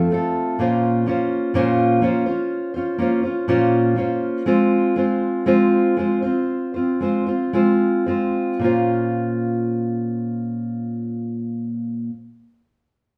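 Bathed in a lush studio reverb, this heartbroken, emotional pop piece in Bb minor opens with a full-bodied, up-front fingerpicked steel-string acoustic guitar playing alone from 0.0 to 12.2 s at 55-63 BPM, drifting from F into Bbmadd9 and Fm/Ab while slowing down between 0.6 and 8.6 s before returning to Bbmadd9.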